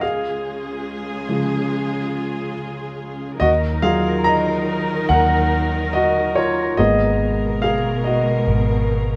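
A baby grand piano leads this heartfelt, hopeful pop ballad, its intimate tone sitting up front with audible action noise and a natural character as it carries the accompaniment, with solo passages from 0.0 and again from 3.4 seconds. Alongside it, a dark studio string section holds sustained chords throughout, bowed as an ensemble with light vibrato, a soft attack and a woody grain. At 3.4 seconds a vintage muted fingered electric bass enters, its amped, foam-muted tone round and low. The tempo is a slow, straight 71 BPM in 4/4, moving from C# to D#madd9 and then G#madd9. The band plays live in one room, wrapped in a moderate large studio reverb, in this short section cut from a longer piece.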